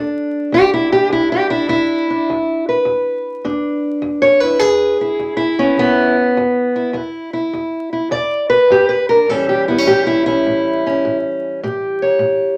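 Acoustic country blues with a gritty, laid-back mood at 103 BPM in a swung 4/4, this short excerpt features a solo fingerpicked steel-string parlour guitar, dark, boxy and up front, moving from E7 to A7 at 9.3 seconds within a wet club reverb under a layer of vinyl crackle.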